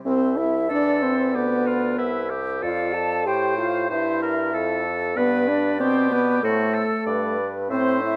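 In a straight 2/4 at 94 BPM, this cheerful, spirited classical-period movement for wind quintet in C major, cut from a longer piece, sets a hollow, vibrato-tinged concert flute on the melody in the background, a clear French horn up front and a distant, roomy clarinet in accompaniment, a bassoon with light vibrato holding the bass up front, and a vintage-toned oboe joining on a second line at 0.7 s, all captured by close, detailed microphones with light reverb.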